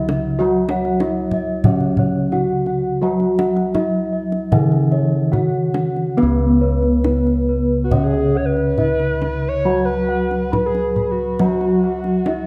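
Heard in a dark, moderately reverberant recital hall, this ceremonial, shimmering Javanese gamelan excerpt moves in 4/4 at 69-99 BPM, with ringing bronze metallophones carrying the melody, accompaniment and arpeggios, bright, airy bossed gongs adding their own arpeggios, a band-limited bossed-gong bass sitting in the background, and a deep, close, dry kendang played with soft hands; then at 7.8 seconds a pure, round sine lead with chorus and vibrato enters up front as a second line.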